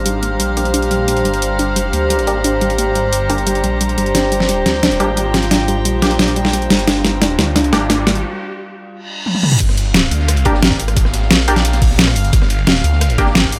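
This excerpt of dark technical drum and bass at 176 BPM in G phrygian opens on a swirling, thick detuned saw bass with phaser and tube saturation, a metallic, eerie FM drone, a soft round pluck playing arpeggios through chorus, 12-bit sampler grit and delay, and a reedy chamber string section with gut-string tone, all pumping to the sidechain under an overdriven dubstep kit with deep snare and bright hats up front. Bold, nasal orchestra-hit-like stabs with reverb and delay punch in from 0.6 seconds as filter sweeps on the pluck and stabs drive the mechanical, aggressive build-up, with drum fills, a break, and a riser and reverse cymbal. At 9.6 seconds the drop lands with a knocking overdriven electronic kick and a very quiet, gritty breakbeat kit with dark cymbals and a high-tuned snare, and the stabs return at 10.5 seconds.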